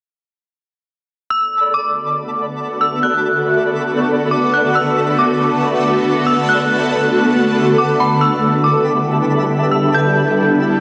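A dark, detuned synth bell opens this spacious, melancholic hip hop excerpt at 1.3 seconds, carrying an eerie, inharmonic melody high in the register with a warbling, vintage FM tone, fast attack and long decaying tail, softened by chorus, cassette tape and tape echo. A twinkling granular texture slips in moments later, its sparkling FM grains and octave-up shimmer sitting low in the mix under built-in reverb. At 2.1 seconds a shimmering ambient pad arrives up front, holding sustained chords with an ethereal, detuned sine unison, slow attack and bright sheen colored by chorus, phaser and reverb. The piece moves at 139 BPM in 4/4 with a half-time feel in B minor, resting on Bm7 before shifting to G69 at 8.2 seconds. The whole recording carries a lo-fi home-cassette character, with a small, wet booth ambience and a rolled-off top end.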